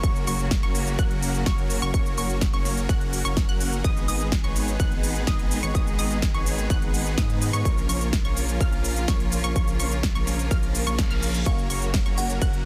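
Anthemic, triumphant festival progressive house in F# major at 126 BPM, cut from a longer piece, where a punchy, up-front electronic kick and an overdriven dance kit with crisp hats, snare, ride and cabasa drive huge detuned supersaw chords, a lush sawtooth pluck arpeggio with dub echo, a deep saturated sine sub bass and distant bowed strings in the background, all pumping with sidechain over F#, G#m and A#m, before a reverse cymbal at 10.7 seconds leads into a woody, airy kalimba melody at 11.5 seconds in a dense, heavily limited master.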